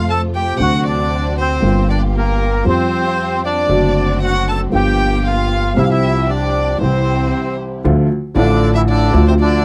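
A dry, close 1970s-style studio sound with light reverb frames this melancholic, tense tango fragment in rubato 4/4, where a reedy, vintage bandoneon sings the melody up front over a bowed solo violin's expressive second line with vibrato and portamento, a dark, mellow upright piano with audible action noise and a slightly detuned tone, and a woody, thumpy gut-string pizzicato bass, while a smooth-topped bowed string section adds background stabs until it drops out at 7.8 seconds, just as a brief break ends.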